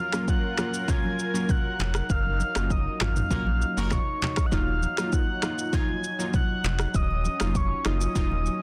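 A straight, steady groove sets this breezy, sunny afrobeats cut in motion, driven by a deep house drum kit of deep kick, finger snaps, handclaps, rim click, shaker and toms, roughened with vintage sampler grit and soft clipping on the snare, while soft-handed, thick-skinned congas sit in the background. A smooth, warbling analog pad holds sustained chords from the start beneath a glassy, crystalline wavetable pluck with filter sweeps and chorus, and a round, dark octave-layered synth lead sings a high melody with vibrato. A full sine-and-triangle sub bass with its octave arrives up front at 1.8 s, and a distant, roomy horn section adds a brief second line around 3.3 s, bathed in plate reverb. The harmony moves from F#maj7 to D#madd9 at 4.5 s, after a band accent through the middle of the passage. The mix is dry, dense and heavily limited, with the drums and bass pushed forward in this short segment lifted from a longer piece.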